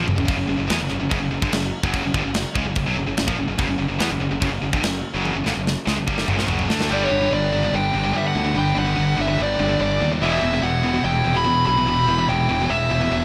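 Set in a light reverb, this epic, relentless heavy metal passage at 145 BPM in 4/4 opens on a high-gain guitar and a tight distorted guitar playing bright, picked riffs in the background over a growly, punchy fuzz bass, while an up-front acoustic kit with a tight kick, medium-tuned snare, crashes and toms pounds in a big room and closes its run with a fill that ends at 6.9 seconds. From there a dark, smooth lead guitar takes the melody up front, overdriven and trailed by digital delay, as a double-tracked distorted guitar joins the riffing higher up. The harmony moves from F#5 to G and then Em.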